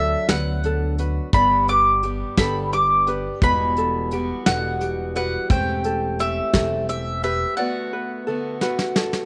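Indie folk in 6/8, bittersweet and stirring, with a building arrangement set in a light small-room reverb. A bright, double-strung mandolin carries the melody up front until 8.9 seconds over a thumb-plucked ukulele's arpeggios, a woody, thumpy pizzicato upright bass and up-front brushed drums with a tight kick. A fingerpicked steel-string guitar with fresh strings gives way at 1.3 seconds to a picked archtop guitar with audible finger squeak, and the drums close on a fill from 8.6 seconds as the chords move from D6 through G, Emadd9 and Am7/E back to D6.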